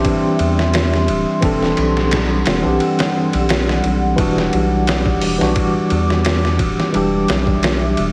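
Heavily compressed with a radio-like squeeze and a lush hall reverb, this brief, brooding, smoky trip hop excerpt at 87 BPM in E minor sets a worn, slightly out-of-tune tine electric piano with tremolo, 12-bit sampler grit and tape echo over a moody, detuned analog pad with chorus, a round, wave-folded analog bass, and an up-front, pitched-down, overdriven sampler drum kit with muffled thumpy kick, medium-tuned snare, hi-hat and ride, all moving from D9sus4 to Em9 at 4.2 seconds.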